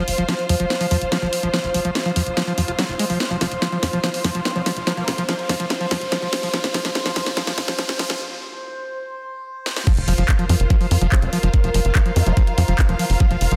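A screaming, distorted acid line dominates this psychedelic, driving trance piece at 144 BPM, its squelchy, resonant sawtooth riff chorused, run through tape echo and pumping against the beat while a filter sweep moves across it through the build-up to 9.9 seconds. Beneath it, a tight, nasal sequencer bass plucks punchy sawtooth and square-wave notes up front, and an overtone-sweeping drone holds sustained chords with slow attack, phaser and its own built-in reverb, while a distant, biting string section adds bright, lush bowed texture with vibrato. A drum and bass kit of cracking snare, handclaps, hi-hat and crash cymbal fills through the build-up, a very quiet riser sounds from 1.0 seconds, and a faint, wobbling vowel-sweep bass surfaces in brief formant-filtered phrases. After a short break, the drop lands at 9.9 seconds with a knocking electronic kick pushed up front and an impact hit. 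The mix sits in light digital ambience, dense and heavily limited, and the passage is cut from a longer piece.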